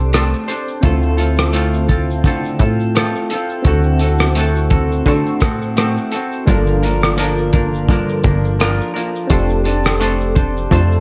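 A relaxed 85 BPM groove in 4/4 with a light swing on the sixteenths sets a hazy, laid-back indie pop and bedroom pop mood in this 11-second excerpt cut from a longer piece. A cloth-damped, thuddy drum kit enters at 0.1 seconds with a tight kick, rim click, hi-hat and shaker, its sound muffled, gritty and saturated with a rolled-off top, sitting up front in a small room. A plucky analog bass, punchy and funky with a fast-attack filter pluck and wave-folded edge, carries the low end up front alongside the drums. A clean, compressed semi-hollow electric guitar plays accompaniment through a lush chorus and warbly pitch drift, while soft, round electric-piano-like synth keys add mellow support coloured by chorus, phaser and a cassette-tape character. The harmony moves from a rootless F6 through Dm7, D7 and Gm7 before settling back on F6 at 9.3 seconds, all set in a small room reverb.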